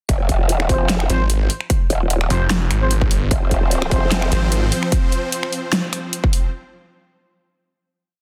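Chaotic and aggressive, this short heavy wobble dubstep piece is one continuous drop built on a half-time, lightly swung groove. A punchy, overdriven electronic kick and a big-room dance kit of finger snaps, hi-hat and a huge snare sit up front in a touch of studio reverb. Two basses carry the weight. A saturated growl bass with chorus plays modulated phrases whose formant-filtered wobble keeps changing speed, and at 1.1 seconds a snarling distorted saw bass joins with chopped, detuned unison phrases. Tight, classical-style stabs from a mellow brass ensemble ring out sparsely through tape echo, moving one chord shape in parallel. From 3.3 seconds, lush supersaw chords pump against the sidechain as a sustained pad, all within a dense, dry, heavily limited master.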